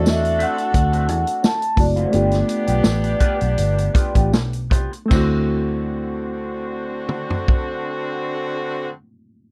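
Cinematic and silky, this lush 1970s-style soul passage in a swung 4/4 slows over its first 5.1 seconds as a soft-mallet vibraphone carries a mellow, ringing melody until 4.3 seconds over D7 and G7 chords, backed by a reedy, slightly out-of-tune electric piano, a slightly broken-up wah guitar riff through a small old amp, tight stabs from a distant, clear horn section, a dark, round muted bass and a punchy vintage drum kit up front, with jingly tambourine in the background, captured in a dry, close studio sound.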